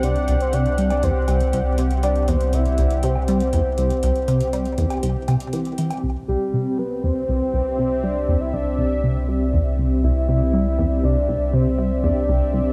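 Ambient, sequencer-driven space music in C lydian at 120 BPM opens on a Cadd9 with a soft octave-layered synth lead carrying a round, dark melody through chorus, tremolo and delay over a sweeping resonant pad, a punchy, funky plucky analog bass riff with delay, a deep round analog bass and faint metallic electronic hi-hat and woodblock that drop out at 6.0 s, all set in a dreamy, reverb-soaked mix with a luminous, expansive mood in this excerpt cut from a longer piece.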